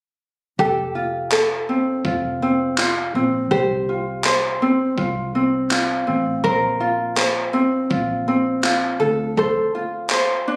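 Carefree and easy-going, this short acoustic pop excerpt opens at 0.6 s with a light, fingerpicked ukulele up front, bathed in plate reverb and moving through Fadd9, Csus4, Bbsus2 and Dm7. Beneath it, a dark, round, foam-muted electric bass sits low and amped, while a gritty, compressed, sampler-style soul kit of handclaps and a thumpy kick, re-recorded in a large room, stays close and prominent until 10.3 s. The whole piece has the casual sound of a phone recording in the room, with a moderate club-like ambience.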